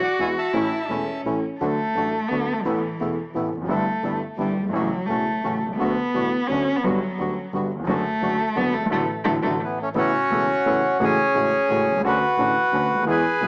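Playful and passionate, this rubato tango fragment in 3/4 at 173 BPM opens in D major and shifts to A major at 10.0 s. A reedy, up-front bandoneon carries the melody briefly at the start and returns at 9.6 s, while a nasal, boxy cello with vibrato, portamento and tape echo sings a second line and takes the solo from 1.6 s to 10.0 s, with a band accent arriving at 8.9 s. Beneath them, a vintage-sounding grand piano with audible action noise, background bandoneon stabs and a biting bowed double bass fill out a small room with moderate reverb, heard through a small-speaker sound.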